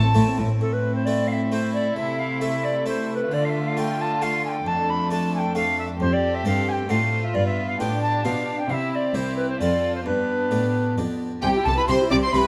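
A lively, festive baroque-style concerto movement in 3/4, cut from a longer piece, opens with a pure, chiffy alto recorder carrying the tongued melody up front, with a gut-string violin section also playing the melody in the background while a second violin section plays a supporting line, a distant, dark viola section and a bright, dry harpsichord accompany, and a nasal cello section holds the bass from 0.2 s, joined by a smooth-topped double bass section only briefly at the start and again from 11.4 s, all in a moderate recital-hall reverb.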